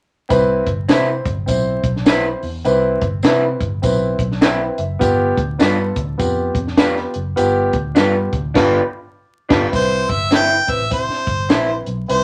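A grand piano, a round, foam-muted electric bass, a compact cocktail kit with a high-tuned snare and punchy kick, and a jingly tambourine in the background open this danceable, swung 1960s-style soul cut, soon joined by slightly broken-up, lo-fi guitar stabs from a small old amp over a Cmaj7 to G7 progression. The piano steps forward with a fill at 4.1 seconds, and the band hits an accent at 8.5 seconds. At 9.8 seconds a clear, present harmonica takes the melody with a light vibrato, all set in a moderate club reverb with a layer of vinyl crackle.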